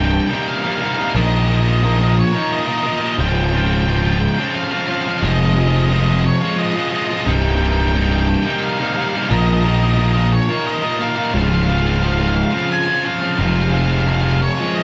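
Recorded live by a band in one room, with moderate studio reverb and a top end that stops short of 7.9 kHz, this brooding, melancholic post-rock excerpt in 3/4 puts a bright, double-tracked distorted electric guitar riff and a punchy, overdriven fuzz bass up front, while a dark octave-fuzz lead guitar sits lower in the mix carrying the melody over a cycling Cm7, Bbsus4, Dbmaj7, Fm7 progression that comes to rest on Fm.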